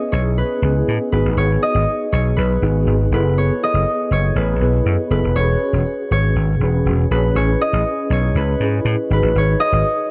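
Polished 1980s jazz-funk pop with a slick, urban mood, this excerpt sets a ringing, thumb-plucked concert harp melody up front over mellow tine electric piano chords thickened by ensemble chorus and a warm, amped vintage slap bass, all in a studio reverb that moves through lush extended chords such as Amaj9, G#m7 and F#m11.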